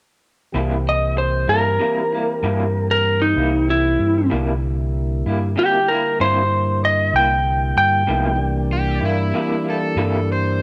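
A dark, slightly broken-up lead guitar, compressed and picked, carries the melody up front in this laid-back, swaggering blues, cut from a longer piece, in 12/8 at 64 BPM, in C mixolydian over a C7 chord. Beneath it sit a round, amped fingered bass, a lo-fi rhythm guitar through a small old amp with tremolo, and a soft, flute-like tonewheel organ with key click and a slow rotary speaker, all in light digital reverb. At 8.7 seconds a warm, overdriven slide guitar played with fingerpicks enters with a brief second line.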